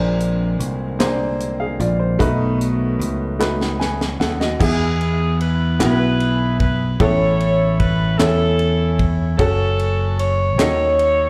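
This slow gospel passage, cut from a longer piece, sounds like a live gig heard through a club's PA, with small-room ambience and club reverb giving it a soulful, hopeful glow at 50 BPM in a straight 6/8. A clear, woody upright piano with audible action noise and short sustain carries the accompaniment throughout, touched by slapback echo, while a bright, up-front picked electric bass anchors the low end from F#1 to E2. A tight funk drum kit, acoustic and natural with a high-tuned snare and tight kick, works across crash, hi-hat, kick, ride and snare, and a hollow, close group handclap sits in the background from 1.0 s. In the opening, a very quiet, mellow French horn section holds sustained chords with light vibrato over Bb9 and B7 harmony, giving way after a drum fill from 3.4 s. At 4.6 s the music settles into E major and a warm, vintage saxophone section takes the melody, loose and up front with a soft attack and slapback echo, moving through E, A, F#m and D#m7b5.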